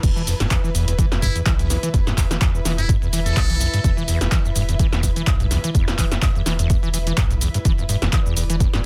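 Hypnotic and gritty, this acid house excerpt runs at 126 BPM in 4/4 with a light 16th-note swing, centred on an E5 chord. A squelchy, resonant sawtooth acid bass carries the riff with a filter sweep, overdrive, subtle chorus, a cassette-tape grain and delay, while a round, dark analog bass sits deep in the background with sidechain pumping. A punchy electronic kick leads the drums, joined by a tape-warmed analog drum machine playing snare, handclaps, hi-hat, shaker and crash cymbal, its snare, clap and hats carrying a short room sound. A lush, bowed studio string section adds a sidechain-pumped texture beneath. From 1.2 to 3.9 seconds a buzzy, thin trumpet with a metal mute plays a brief close-miked solo melody with light vibrato and delay. The mix carries light reverb and a dense, heavily limited modern master.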